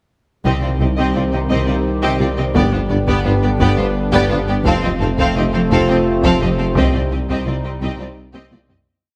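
A brooding, vast cinematic cue in C dorian at 57 BPM in 6/8 opens at 0.4 seconds with warm, lush violins carrying the melody, soon joined by a second violin line, over intense viola and cello ostinatos and dark trombone and mellow French horn chords, with a rumbling detuned saw bass entering just after, doubled by tuba and double basses, and hollow chorused pad chords arriving at 0.9 seconds. A band-limited taiko ostinato sits in the background as the cue moves through Cm, G and F on a moderate scoring stage reverb, before fading from 6.8 seconds under a drum fill at 8.3 seconds.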